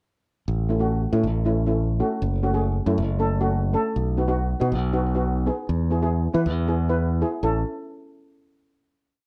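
A bright, direct fingered electric bass opens this festive, bouncy calypso at 0.5 s with a syncopated figure, and a double seconds steel pan joins just after. The pan sits up front with a mellow, airy, shimmering tone, struck with soft rubber sticks and playing rhythmic triad chords. The brisk 138 BPM groove moves in straight 4/4 through a short verse in A major, tuned slightly sharp to A4 = 444 Hz, with the chords running A, F#m, B and E. At 7.4 s the piece lands on a closing A chord, and both parts stop at 7.6 s. The sound is dry and close, like a 1970s studio session, with the bass's electric edge and the pan's metallic sparkle heard clearly up front.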